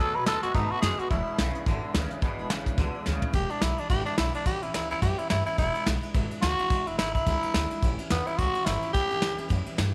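Rowdy and rollicking, this swinging rockabilly excerpt puts a raspy, growling tenor saxophone with slapback echo up front over thumpy pizzicato upright bass, a jumbo steel-string acoustic guitar picked in the background and airy brushed drums, while a twangy, scooped electric guitar riff with ensemble chorus plays until 3.3 s, just after a drum fill at 3.1 s leads into the saxophone's solo.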